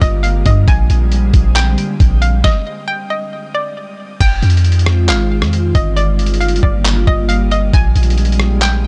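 Hazy and ethereal, this atmospheric cloud-rap excerpt moves at a half-time 136 BPM in F dorian, with a hollow, bright square-wave pluck melody carrying chorus and delay over a glassy FM pad whose sustained chords breathe with ensemble chorus, built-in reverb and sidechain pumping, while a deep, boomy 808-style bass and a muffled, pitched-down lo-fi sampler kit with a thumpy kick, snare, rim click, handclaps, hi-hat and crash sit up front in a digital ambience capped at 10.5 kHz, and a stop from 2.4 to 4.2 seconds briefly halts the harmony before the groove returns.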